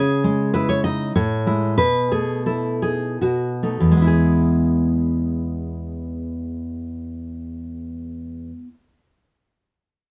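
Close, detailed microphones and a dry room put the nylon-string guitar up front, so every finger squeak can be heard in this short excerpt from a longer romantic piece for solo classical guitar. The mood is sunny and warm, and the music moves in a flexible, rubato three-beat metre. The fingerpicked guitar has a deep classical tone and covers a range from E2 up to D#5, playing from the start until 8.8 seconds. The opening phrase slows down through its first 4.1 seconds as the harmony passes from C#m through Amaj7 and B7sus4 to B7. It then settles on an E chord at 4.1 seconds, where a second section begins.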